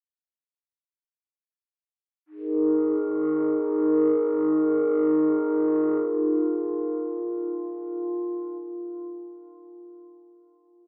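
Meditative and spacious, this short slice of world-leaning meditation music drifts in free time, cut from a longer piece. A lone glass harmonica carries everything, entering at 2.3 seconds and dropping out at 8.6 seconds, its notes hovering between Eb4 and Bb4. The tone is glassy and ethereal, with a slow attack that lets each note bloom and a gentle beating that shimmers within the sustained sound. Sitting up front in the mix, the instrument is colored by cassette tape character and a tape echo that trails its phrases. A wet studio reverb and the soft grain of a home cassette recording surround the piece, giving the short passage an intimate, airy stillness as it moves from its opening section into a second one at 5.5 seconds.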